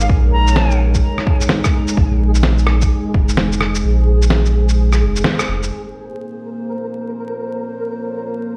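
A swung 128 BPM future garage groove in 4/4 opens this nocturnal, rainy Bb minor fragment, with an overdriven, deep electronic kick up front until 3.3 seconds, alongside a muffled, sampler-style shaker, fat snare and rim click and a round sine sub bass that pumps against the beat until the drums and bass fall away at 5.7 seconds. Over a Bbm7 chord, a moody, detuned analog pad pulses with chorus and sidechain pumping, while a flickering, granular texture hovers quietly in the background, both sustaining to the end at 8.6 seconds. A bright, reedy silver flute with tape echo sounds only a brief airy phrase at the very start, all set in stone-room reverb with vinyl crackle, as if played through a big sound system in a bare room.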